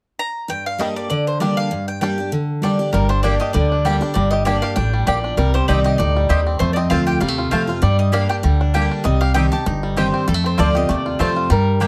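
Lonesome and rustic, this bluegrass piece in G minor moves at a brisk 196 BPM in 4/4, with a light swing on the eighth notes, and it is cut from a longer performance. A picked mandolin carries the melody almost from the start, its double strings giving a woody edge, while a bright, full-bodied jumbo steel-string guitar supplies picked accompaniment close behind. A twangy, percussive banjo played with fingerpicks joins the melody at 0.8 seconds, sitting a little further back. At 2.9 seconds a dark, thumpy upright bass with gut strings enters up front, and a second double-strung mandolin soon adds stabs. The harmony cycles through G minor, C minor and F, and the close, detailed microphones with little reverb keep every acoustic string sounding immediate and dry.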